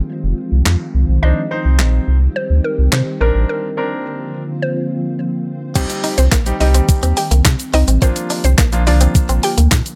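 A woody, FM-toned mallet-like synth pluck carries the melody over a shimmering, ethereal ambient pad at the start of this bittersweet, driving dance-pop excerpt in C minor at 106 BPM, soon joined by a deep, round sub bass, a crisp 8-bit digital drum machine with a thumpy kick, and a bright concert grand piano playing accompaniment, with the bass, pad and piano pumping from sidechain; after a break from 3.5 s, the drop at 5.8 s brings a higher pluck line with digital delay, a twangy, direct-recorded clean electric guitar riff in lush chorus, and a grainy, very quiet tube shaker, in a dry mix.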